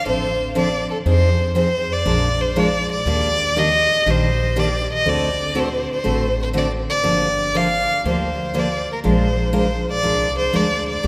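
Acoustic string swing in the jazz manouche style moves at 120 BPM in 4/4 with a swung eighth-note feel, and the mood is virtuosic and swinging. A single bowed violin carries the melody from the very start, sitting close and up front with a soft attack, expressive vibrato and gliding portamento through its upper-middle range. From 0.1 seconds a picked steel-string jumbo acoustic guitar supplies the accompaniment, its tone bright and full-bodied and also placed prominently in the mix. An upright bass on gut strings holds the low end with a woody, dark, thumpy pizzicato sound. The harmony travels from Dm7 through Fm7 and Bb7 to a sustained Ebmaj7, then D7 and Gm7 before returning to Bb7. A heavy church reverb with a long 3.6-second tail surrounds the trio, lending the cut-from-a-longer-piece passage the spacious air of a large hall.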